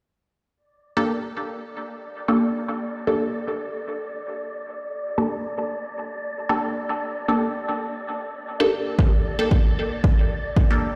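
A muted, detuned dub chord stab opens this deep, cavernous dub techno excerpt at 1.0 s, its resonant filter pluck roughened by 12-bit sampler grit, phaser and dub echo, and sidechain pumping on a G minor add-nine chord. An airy, breathy noise texture drifts in behind it at 1.6 s, dark and sustained in its own reverb. A punchy, layered electronic kick arrives up front at 9.0 s, all of it heard through a huge ambient reverb, like a big sound system in a bare stone room.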